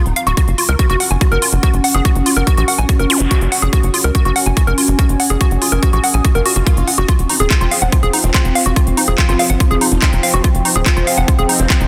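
This excerpt opens on a tight, punchy sequencer bass, nasal and up front with a tube-saturated sawtooth bite, driving a hypnotic psychedelic trance groove at 143 BPM in straight 4/4. A tape-toned electronic kick lands from 0.4 seconds alongside a layered drum and bass kit of handclaps and crisp hats, both treated with studio reverb. A woody, warbling wave-folded pluck carries the riff with chorus, dub echo and sidechain pumping, while a deep, moody ambient pad of detuned unison and ring modulation breathes underneath with its own pumping and built-in reverb. Brief electronic zaps flicker at 3.1 seconds, and a swell from 6.4 to 7.1 seconds ushers in a bubbling, resonant stepped-filter texture of sustained chords. A very quiet formant-sweep wobble bass joins at 8.2 seconds, all within a light digital ambience and a dense, heavily limited modern master.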